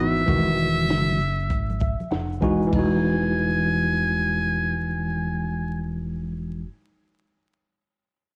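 Warm and smooth, this short jazz-hop fragment cut from a longer hip hop piece swings gently at 98 BPM in E major, opening on an Emaj9 chord as a buzzy, breathy muted trumpet sings a jazz-style melody with light vibrato over a worn, slightly out-of-tune tine electric piano, lightly overdriven and cassette-coloured, that adds a fill from 1.5 to 2.7 seconds, while a woody, thumpy pizzicato upright bass holds the low end, a punchy small-room cocktail drum kit with a high-tuned snare and 12-bit sampler grit plays only until 2.9 seconds, and very quiet, dry tube shaker and congas sit beneath, all under light reverb, vinyl crackle and the hiss of a home cassette recording.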